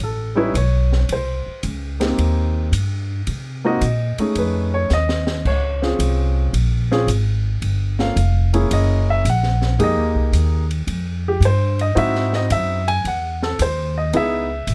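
Cut from a longer piece, this cool, swinging jazz piano trio in F minor at 110 BPM opens with a warm, up-front grand piano soloing over a woody, thumpy pizzicato upright bass and an open acoustic drum kit of dark cymbals, a high-tuned snare and a boomy kick, whose brief fill at 4.9 seconds leads into rich harmony moving through chords such as Bbm9, Gb9 and Fm11, all captured with close, detailed microphones in a dry room.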